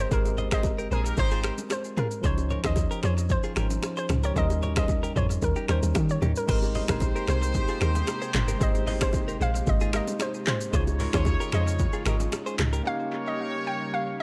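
A punchy, woody log drum bass anchors this romantic, breezy afrobeats excerpt at 113 BPM in Ab major, driven by an overdriven deep house drum kit with a deep kick and metallic hats, very quiet ringing congas and bongos, a barky tine electric piano, a twangy clean electric guitar riff with analog delay and a hollow, bouncy square pluck melody with chorus and delay. A distant, clear horn section makes a brief appearance at 0.5 seconds and returns at 6.5 seconds, a soft, warbling breathy pad enters in the background at 7.1 seconds, and a break at 12.9 seconds leaves the melody, keys, horns and pad in an echo-heavy mix.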